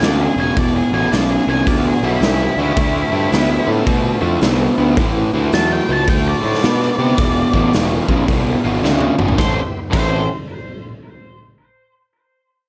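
Gritty and heavy, this swung blues rock and southern rock fragment pairs a dark octave-fuzz lead guitar melody with an up-front, double-tracked overdriven guitar riff, a growly fuzz picked bass, a saturated raw garage drum kit with a punchy kick and a drum fill from 8.8 to 9.4 seconds, and a very quiet, shouting tonewheel organ with key click and slow rotary, all in a small room with light reverb.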